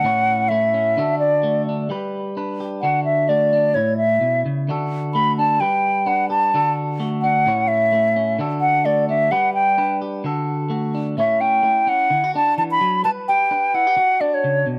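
A small room's light reverb surrounds this sunny highlife excerpt, where a hollow, pure concert flute sits close and up front, singing with vibrato and tongued notes as it carries the melody as a solo through the first 11.2 seconds. Beneath it, a clean, twangy electric guitar picks a compressed, scooped accompaniment, also up front, cycling through A, D and G with a gentle swing in 4/4.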